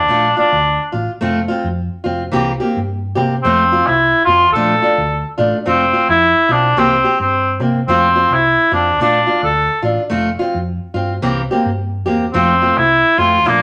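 Highlife guitar band music in F major, this joyful, sunny passage moves at 108 BPM in 4/4 with a gentle 16th-note swing, and it is cut from a longer piece. A cor anglais carries the melody up front throughout, its tone warm and distant with light vibrato, played in a classical solo style between Bb3 and A4. Beneath it, a picked steel-string parlour acoustic guitar enters at 0.1 seconds with boxy, up-front accompaniment. A hollow-body short-scale electric bass, fingered, supplies a dark, round and punchy amped low end from F1 to C3, sitting well back in the mix. The harmony cycles three times through Bbmaj7, F, C7 and back to F, while a moderate large-studio reverb of 0.9 seconds lends the whole band a roomy glow.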